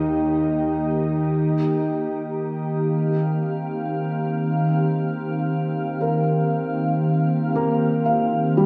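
Bathed in a wet concert hall reverb, this luminous, warm ambient excerpt in Eb major drifts in free time. An up-front glassy, ethereal FM pad with ensemble chorus holds slow-blooming sustained chords throughout, while an earthy, nasal cello section sounds a low Eb bass until 1.3 seconds. A bright, string-like sawtooth drone with vibrato sustains until 1.5 seconds, and a soft, felt-muted upright piano with audible action noise enters at 6.0 seconds with intimate, mellow arpeggios.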